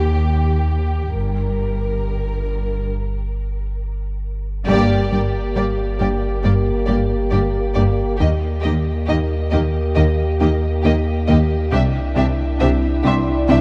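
A straight 4/4 pulse underpins this tense, mysterious suspense film score, cut from a longer piece, where a focused, vibrato-rich violin section carries the melody over lush bowed cellos with portamento, smooth double basses, a round sine sub-bass drone with subtle chorus up front and a faint, muted felt piano texture, until a break gives way at 4.7 s to a band accent that brings in a second violin line, distant violas, mellow sustained French horn chords and a punchy sawtooth analog bass riff with a filter pluck, the whole piece set in a vast, echoing space.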